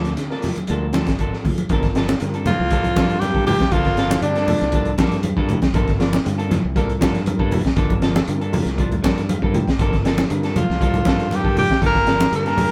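A breathy, up-front tenor saxophone with light vibrato and scooped notes carries the melody from 2.5 seconds and returns at 10.6 seconds, shadowed by a very quiet, clear baritone saxophone second line, over a hypnotic, defiant afrobeat groove at 119 BPM in G minor built on a crunchy breakbeat kit with a punchy kick, ringing congas, a bright fingered bass sitting in the background, picked arpeggios from a slightly broken-up guitar, clean guitar stabs, and a reedy, overdriven electric piano that adds a fill at 8.8 seconds, the band heard live in one room with moderate studio ambience in this excerpt from a longer piece.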